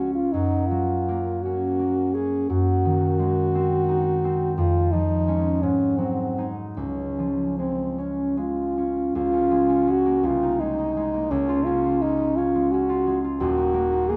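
Romantic classical music for a duo, tender and unhurried in a rubato 6/8: a mellow French horn sings the solo melody with a light vibrato in the classical style, while a fingerpicked concert harp rings out beneath it, both parts up front in a light reverb, as this short passage from a longer piece moves into a new section at 9.2 seconds.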